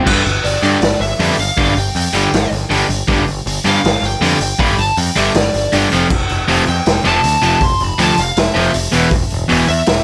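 Lead guitar through a small cranked amp sings a dark, overdriven melody with delay over two crunchy, distorted rhythm guitars riffing on G5, F and E5, a growling picked bass and a gritty, saturated garage drum kit with dark cymbals and a punchy kick, giving this aggressive, raw punk rock excerpt at 159 BPM a half-time feel in a dry, small-room sound.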